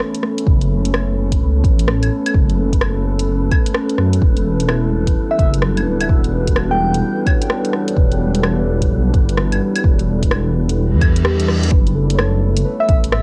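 Ghostly and melancholic, this future garage passage moves at 128 BPM in 4/4 with a swung sixteenth feel, sitting in E dorian and drifting from F#m to Em7 before returning to F#m. A warbling, nostalgic pad holds sustained chords under the muted, intimate felt-like synth keys, which sit in the background with chorus, analog delay and a low-pass filter, both pumping against the kick. An overdriven, layered garage kit of claves, hi-hat and rim click runs from the very start, and from 0.5 s a dark, detuned saw bass rumbles up front with tube saturation and sidechain pumping alongside a deep electronic kick. An airy, breathy wind-like noise texture hovers on a single high tone in the background, while a round, gentle FM lead strikes brief keys-like phrases, first at 5.3 s, colored by chorus and analog delay. A reverse cymbal rises into a short new section at 11.7 s, and the whole piece carries the lo-fi character of a home cassette recording in a light reverb, heard as a fragment cut from a longer work.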